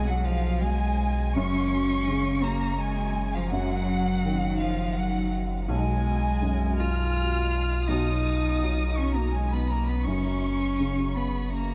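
Soaked in a huge, dreamy reverb, this fragile, melancholic neoclassical fragment in a rubato triple metre sets a rich, expressive chamber violin section singing the melody high above a clear, smooth solo cello's second line, with a woody upright piano, thickened by ensemble chorus, laying down accompaniment and a deep, saturated sub bass sitting up front, all four playing throughout the 11.7 seconds before the cut.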